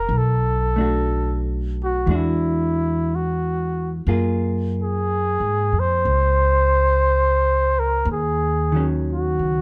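Wistful and melancholic, this brief jazz ballad cut from a longer piece sways with a gentle swing as a veiled, bucket-muted trumpet sings the solo melody up front with light vibrato and scooped notes, over the dark, clean picked accompaniment of a vintage hollow-body jazz guitar and the woody, growly pizzicato of an upright bass, all captured with close, detailed microphones and light reverb, the trumpet carrying a plate reverb of its own.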